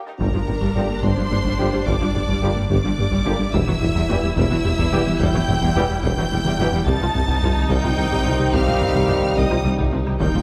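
A rich, focused violin section carries the high melody in this brooding, futuristic hybrid orchestral and electronic film score in 6/8, with a second, more distant and intense violin line, smooth, close violas, and very quiet, lush cellos and double basses beneath. A mellow French horn section with a vintage tint holds sustained chords alongside soft-attack trombones and a very quiet tuba, while a pure sine sub bass and a dark, gliding sawtooth synth bass sit in the background under a round, tine-like FM pluck playing gentle arpeggios. Heavy, saturated taiko drums sound behind the ensemble and play a fill around 6.5 seconds, and the whole piece sits in a moderate scoring-stage reverb.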